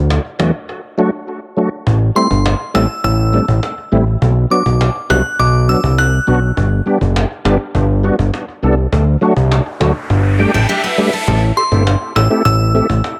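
A fat, saturated analog bass opens this tough, bouncy dancehall cut, joined at once by a woody cajon roughened with vintage 12-bit sampler grit and a reedy tonewheel organ turning through chorus vibrato and a slow rotary speaker, all set in an echo-heavy small room. A crystalline FM bell carries the melody from 2.2 s, and near the end an electronic riser builds under an organ fill while a picked steel-string acoustic guitar adds brief, fresh-stringed arpeggios before the bell returns at 11.6 s.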